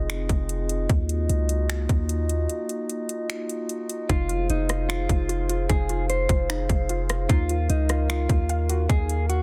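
A deep, boomy 808-style bass with a fast attack and decaying sine tone sits up front in this melancholic, spacious cloud-rap excerpt, joined by an electronic trap kit of hard-clipped kick, metallic hi-hats, finger snaps, rim clicks and a softly clipped snare, all in a half-time feel. A glassy, ethereal glass harmonica holds slow-attack chords with a shimmering beating throughout, and after a break at 2.5 seconds, a dark, clean, fingered electric guitar melody with delay enters at 4.1 seconds alongside warbling, lo-fi, detuned pluck arpeggios drifting in the background. The mix is dry, dense and heavily limited in a modern style.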